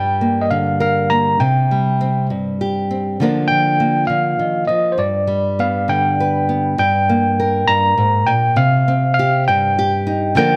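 Close, detailed microphones in a moderate recital hall reverb frame this intimate, melancholic acoustic folk excerpt at 67 BPM in a straight 6/8, where a barky, gritty overdriven tine electric piano with medium tremolo sits up front carrying the melody over a small, fingerpicked nylon-string guitar accompaniment as the harmony moves from Gm7 through C5, Bb/D and G before settling into Gm at 6.8 seconds and then Cm.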